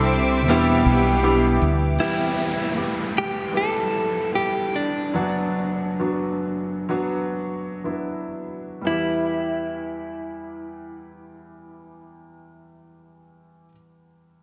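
Soaked in a lush hall reverb, this dreamy pop ballad in E minor carries a longing, emotional mood in a straight 4/4 at 57 to 79 BPM. It opens with an earthy chamber cello section, a thick, detuned unison pad, a round fretless electric bass and a clear baby grand piano treated with chorus. At 2.0 seconds the cellos, pad and bass fall away as a clean, direct-recorded electric guitar takes the melody with harmonic tremolo and tape echo over the polished piano, while a faint electronic downlifter sits beneath and the tempo slows until 8.9 seconds.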